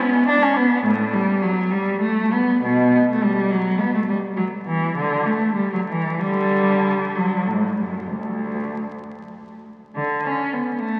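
A rich, bowed solo cello, played by one performer with expressive vibrato and portamento, carries this flowing, grave fragment of a baroque-style classical suite movement in D major, moving in a rubato 12/8 at around 62-72 BPM through a long cathedral reverb and the crackle of a very old 78 rpm record before turning to a new section at 10.0 s.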